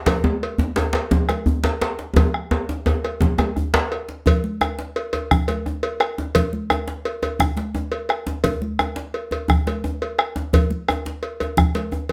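A driving, earthy West African drum ensemble starts at once in a straight 12/8 at 115 beats per minute, with a round, close bombo, a metallic cowbell up front, and thick-skinned, medium-tuned congas. Two deep djembes play alongside them from the start: one is compressed and saturated, with metal rattles and hard hands, and the other rings in a live room. A drum fill runs from 2.2 to 4.3 seconds, and one djembe drops out at 3.9 seconds, just before the ensemble moves into a new section in this cut from a longer piece.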